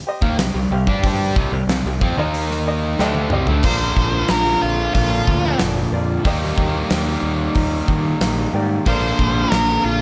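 A straight 4/4 pulse at 92 BPM drives this gritty, brooding classic rock excerpt, tuned to A4 = 435 Hz. Up front, a polished, gated 80s drum kit sets a tight kick and fat snare under bright cymbals in an airy stone room. A double-tracked, picked electric guitar carries the distorted riff over Cm and Eb5, while a fingered bass growls beneath it with punchy overdrive. In the background, an upright piano adds woody, intimate accompaniment with audible action noise, and it plays a fill from 2.7 seconds as the drums also fill toward the change. From 3.7 seconds an octave-fuzz lead guitar takes a dark, picked solo as the harmony moves between Bb and Eb, and light reverb gently colours the mix.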